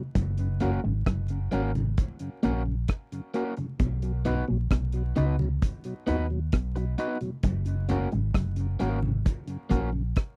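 A dry, close recording with a 1970s studio character and a light bed of vinyl crackle opens this short cut from a longer roots reggae piece, sunny and laid-back at a relaxed 66 BPM in straight 4/4. A mellow tonewheel organ sounds first at 0.0 seconds, round and clean with a touch of key click through a stopped rotary speaker. At 0.2 seconds the rest of the band arrives: a deep reggae drum kit, dark and smooth with a tight kick, hi-hat and rim click up front; a vintage foam-muted fingered electric bass, amped and rounded, sitting just as close; a twangy picked electric guitar riff, bright through an envelope filter, set in the background; and low-tuned congas with a thick skin, distant in a large room. An electric guitar at the edge of break-up joins at 0.6 seconds, compressed, fingered and slightly gritty, with tape echo trailing its accompaniment. The harmony rests on F#, moves to B, and returns to F# before the passage ends.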